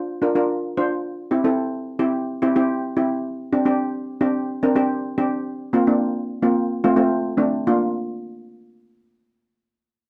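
Dry and close, this 1970s-style studio recording puts a lone steel pan up front in a boxy small room. It's a carefree, festive calypso in Bb major at 108 BPM in straight 4/4. Cello pans struck with hard rubber sticks give a metallic, shimmering accompaniment over chords moving from Bb through C, Csus2, Fsus4 and F before returning to Bb at 7.7 seconds, and the pan stops at 7.9 seconds in this short cut from a longer piece.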